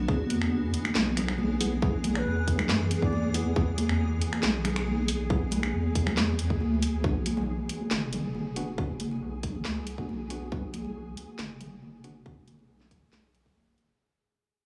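A blurred, evolving granular pad and a deep, saturated wobble bass with chorus open this cavernous, meditative half-time dubstep fragment at its drop, joined by a tight, up-front electronic kick, a garage kit of finger snaps, hi-hat and cracking snare, and high-tuned congas that sound distant under dub echo. A worn, slightly out-of-tune tine electric piano places filtered, echoing stabs in the background, a flickering grainy texture hangs in the mix, and a breathy, expressive ney with vibrato breathes a short echoed phrase from 2.2 seconds. The pad falls away at 7.0 seconds as the passage moves from an E chord to B minor and begins its fade-out, while the bass and texture keep sounding until the cut at 14.0 seconds.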